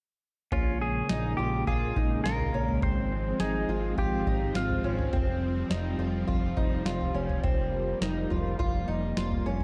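Dream pop with a melancholic, ethereal mood, this excerpt sits in a steady straight four over a dark production with a moderate plate reverb and digital ambience. From 0.5 s, a booming analog drum machine with a deep kick, tonal snare and toms anchors the groove beside a fat, detuned analog bass. A vintage string machine voicing violas holds sustained chords through its chorus, while a fingerpicked twelve-string acoustic guitar spins shimmering, octave-doubled arpeggios, its boxy tone touched with faint finger squeak and tape echo. A clean, twangy lap steel carries the slide melody through tape echo until it drops out at 5.0 s. The harmony moves from Bbm7 to Ab6 and settles on Fsus2 before the cut at 9.6 s.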